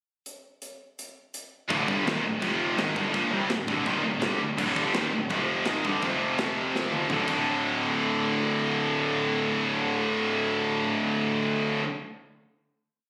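An up-front, high-gain electric guitar hammers out a distorted power-chord riff from 1.7 seconds, backed by a second heavy guitar and a double-tracked, scooped one, in this relentless, aggressive heavy metal piece. A growly, fuzz-driven bass doubles the riff in driving eighth notes, while an acoustic rock kit with punchy kick, medium-tuned snare and bright cymbals opens with a pickup bar at 0.3 seconds, plays a metal drive groove, and closes with a fill before dropping out at 7.4 seconds, so the guitars and bass ring through the final hit on their own. The sound carries studio reverb and has the roomy character of a phone recording.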